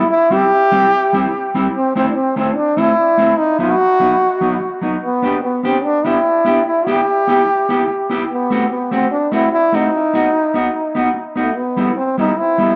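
Ska at 147 BPM with a light swing and a mischievous, energetic mood, this excerpt features a breathy, whispered trombone carrying the melody up front with vibrato, soft attacks and scooped notes, over a mellow, dark, clean fingered electric guitar, both soaked in dub echo inside a wet studio reverb as the chords move from C through Am, B, G and F#dim before settling on Em at 11.6 seconds.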